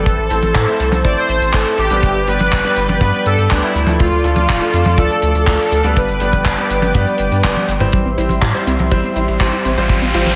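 Light studio reverb gives this melodramatic, bittersweet italo disco passage, cut from a longer piece, a polished sheen in straight 4/4 over an Am, G, Dm, G progression. A brassy, fat synth brass melody with chorus, cassette tape colour and delay leads over a smooth, detuned pad, bright baby grand piano stabs with 12-bit sampler grit and delay, a round, deep analog bass, a tight kick and a damped, dry 70s kit of handclaps, hi-hat and toms in gated reverb. The brass stops at 7.4 s as a drum fill leads into a new section at 7.9 s, where a lush, punchy unison pluck arpeggio enters in the background, its filter sweeping, joined by an electronic riser at 9.0 s.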